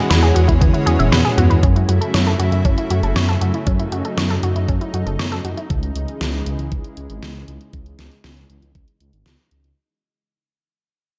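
Moody, nocturnal synthwave at 118 BPM in C# minor, cut from a longer piece, where a lush, bright detuned pad holds sustained chords with chorus and sidechain pumping, a round, nasal, wave-folded analog pluck spins chorused, delayed arpeggios until 5.7 s, a deep, rumbling, saturated saw bass sits up front, and a knocking, overdriven electronic kick joins an overdriven pop kit with a deep snare and gated reverb, briefly dropping out at 1.1 s near the end of a drum fill that starts at 0.6 s, before the pad takes a filter sweep as the whole piece fades out from 1.6 s in a light reverb.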